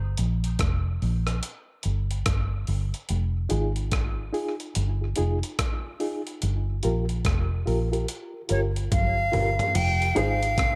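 A breathy, bright silver concert flute stands out in this short dub reggae excerpt, entering up front at 8.5 seconds with a tongued, unsteady vibrato line that carries tape echo. Underneath, a meditative, deep groove moves at 72 BPM in F minor with a swung sixteenth feel, anchored by a dark, round, foam-muted fingered bass that plays from the very start and sits punchy and close. A sampler-style breakbeat kit, compressed, pitched up and gritty with a thumpy kick and the air of a large room, comes in at 0.2 seconds and works through crash, hi-hat, rim clicks and toms, ending the first stretch with a fill before the chords settle back on Fm7. From 3.5 seconds a worn, reedy electric piano adds stabs through its built-in speakers, slightly out of tune and shimmering with fast tremolo and tape echo. In the closing moments a very quiet, hollow-body electric guitar picks bright arpeggios, and a dark, clean, fingered electric guitar offers a brief echoed accompaniment, all set in light reverb.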